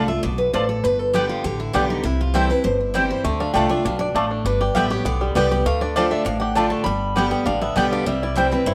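Bluegrass in D dorian at a driving 199 BPM with a haunting edge, this short excerpt sets a bright, full-bodied picked steel-string guitar melody touched with analog delay over a second picked guitar's accompaniment, woody mandolin stabs and a pizzicato upright bass, with a twangy, percussive banjo melody joining at 3.2 seconds, all in a moderate studio reverb over a Dm, G and C progression.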